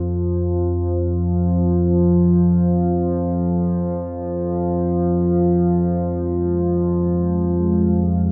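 In free time and F minor, this short ambient fragment cut from a longer piece opens on an up-front analog drone, a warbling, vintage sawtooth and pulse-wave tone with pulse-width modulation and chorus, held on an Fmadd9 colour from 0.0 seconds. At 7.3 seconds a deep, moody pad of detuned unison saws with a sine sub octave slips in above it, full-bodied and mellow in the background with chorus and its own reverb. The huge, dark reverb, with a decay time of roughly 8.5 seconds, leaves a desolate, unsettling stillness.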